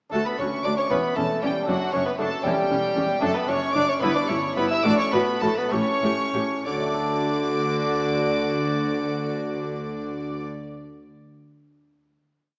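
Brilliant and festive, this short baroque-style concerto movement in D major moves in a straight 6/8 at roughly 62-78 BPM, slowing from 2.5 to 6.7 seconds before settling onto a final D chord held to the close. A dark, reedy studio violin section carries the melody with a smooth top and gut-string tone, while a solo bassoon, up front and warm, doubles the tune at the octave. A rich chamber violin section with light vibrato adds a second line, also doubling the tune at the octave, as a viola section in the background supplies repeated notes and sustained chords. Underneath, a dark cello section plays repeated and sustained bass notes, doubled by a double bass section, and a delicate fingerpicked lute with double nylon strings rolls chords in the background until 10.7 seconds. The harmony moves through D, A7 and Em/G before the ritornello resolves at 6.7 seconds, all set in a generous scoring-stage reverb heard through a small-speaker sound.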